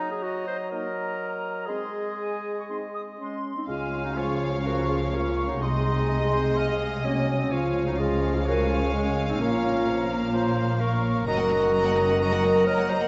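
A wet concert hall surrounds this recording with a long reverb tail and a soft, rounded top end. It is a graceful, cheerful passage cut from a fast romantic movement for symphony orchestra, in Db major at 126 BPM in 4/4, played with a dramatic, rubato feel. The woodwinds open it: a bright solo clarinet, a clear, roomy oboe and a pure, distant flute group trace second lines above a mellow bassoon, and a dark French horn section adds sustained chords from 0.7 s. At 3.7 s the strings arrive. A lush violin section carries an expressive melody with vibrato and a soft attack over a quieter violin line in the background, while a very quiet, rich viola section fills in the accompaniment and a focused chamber cello section and woody double bass section hold the bass. The harmony moves through Db, Ab and Bb minor chords, and the horns, cellos and basses sit most prominently in the balance.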